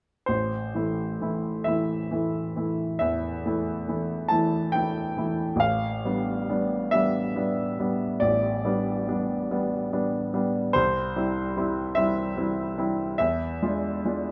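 A clear, present grand piano opens at 0.3 seconds with a yearning, wistful romantic nocturne in a rubato 12/8, spanning A1 to A5 as it moves from A minor through G over A and C to an unsettled E7b9 chord in this short fragment cut from a longer piece, captured up front by close, detailed microphones in a moderate stone room.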